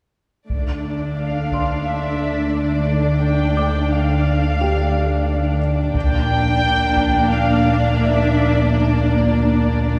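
A dark, woody violin section carries the melody from 1.2 seconds, its bowed sul tasto tone lush with vibrato yet set at a distance, in this ominous, tense cue cut from a longer suspense film score. Moving at 88 BPM in a straight 4/4 and centred on D minor, the harmony rests on Dm before shifting to Bb at 5.9 seconds. Beneath the melody, a second violin section plays a rich, intimate line with light vibrato and a soft attack, while the violas float in a pure, faraway accompaniment, both bowed sul tasto. Cellos and double basses hold the low register in the background, the cellos shadowy and close, the basses warm and floating, reinforced by a deep, clean sine sub bass that sustains a smooth drone on D. Solo taiko struck with hard sticks, compressed and saturated, sounds in the background for two brief passages, and a felt-muted upright piano adds a mellow, thin-felt texture from 1.5 seconds. 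The whole ensemble sits in the lingering reverb of a scoring stage, giving the recording the spacious sense of a church or concert hall.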